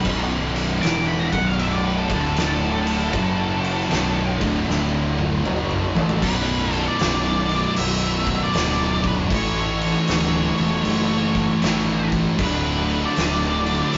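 An oversized, low-tuned drum kit sits up front with a punchy kick, fat snare and dark cymbals in a pumping stone room, rolling through a fill from 4.7 to 6.2 seconds, in this ominous, swung slice of stoner and doom metal. A murky octave-fuzz lead guitar solos over the opening 6.2 seconds, while a bright, double-tracked high-gain guitar and two thick fuzz guitars grind out the riff in the background above a round, overdriven fingered bass. The rough rehearsal-room sound is saturated and dull at the top, with light reverb.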